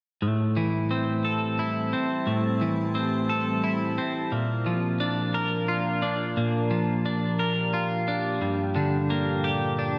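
Rock in a slow 6/8 at 59 BPM, cathartic and melancholic, where a bright, twangy, compressed twelve-string electric guitar sits up front picking clean arpeggios with slapback echo from 0.2 seconds while an evolving, morphing wavetable pad with slow attack, chorus, phaser and built-in reverb enters at 1.2 seconds beneath it with sustained chords, moving from Am7 through Bbmaj7 to Gm7 in a lush hall reverb that gives a big arena sound to this fragment of a longer piece.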